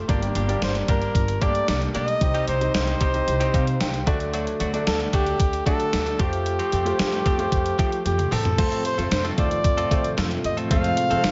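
A clear, close-miked flugelhorn carries the melody up front from 0.6 seconds, its pop-style vibrato coloured by tape echo, in this dramatic, nostalgic slice of 1980s-style pop cut from a longer piece. Beneath it, a gated 80s digital drum machine punches with a thumpy kick and a gated-reverb snare that sounds re-recorded in a large room, and it closes the first part with a fill at 8.1 seconds. A clear concert grand piano with audible action noise and long sustain supplies the accompaniment and adds a fill of its own around 3.3 seconds. Meanwhile a woody, growly upright bass holds down the low end, and a twangy, direct-recorded clean electric guitar riff with subtle chorus sits further back. At 8.6 seconds the harmony settles onto F and a brassy, detuned sawtooth analog pad with a soft attack and chorus joins in the background. The whole is framed by light digital ambience and a slightly dark top end.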